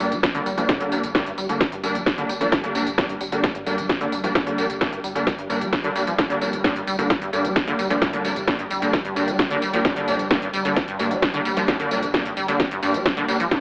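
Aggressive, detuned sawtooth rave stabs sit up front in this relentless, industrial slice of driving peak-time techno, their thick unison hits carrying chorus, built-in reverb, analog delay and a sidechain pump in a straight feel. Beneath them, a squelchy, resonant acid bass riff plucks and decays through lush chorus, analog delay and its own sidechain pump. An up-front kit of cracking snare, smooth hats, tambourine and toms, carrying its own analog delay, plays from the start, and a heavy, tape-warm electronic kick joins it at 0.2 seconds. A deep, triangle-toned sub bass holds a sustained, overdriven low note in the background, and from 1.1 seconds a very quiet, moody pad drone with a slow attack and a moving notch adds a dark haze. The whole mix is echo-heavy, set in a moderate echo-chamber reverb and squeezed into a lo-fi AM radio sound, as if cut from a longer track.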